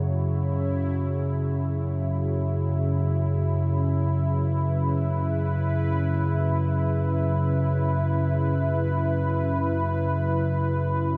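A deep, ominous drone rumbles up front in the low register alongside a bright, airy, detuned pad holding sustained F#5 chords with a resonant, chorused shimmer, opening this cavernous dark ambient excerpt in free time that unfolds within a vast, echoing cathedral space over its 11.2 seconds.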